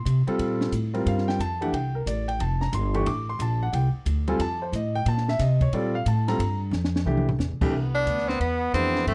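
A trumpet with scooped notes and a smooth top enters at 7.7 seconds, and a bright, forceful tenor saxophone with vibrato cuts in up front at 7.9 seconds, in this relaxed, sophisticated small-group swing and bop fragment in F major at 180 BPM. Before that, an intimate concert grand piano with deep bass, long sustain and audible action noise comps through the chords, over a woody, dark pizzicato upright bass and a compact cocktail drum kit with a punchy kick and high-tuned snare. The kit plays a fill at 6.7 seconds, and the whole group sits in a dry, close 1970s-style studio sound.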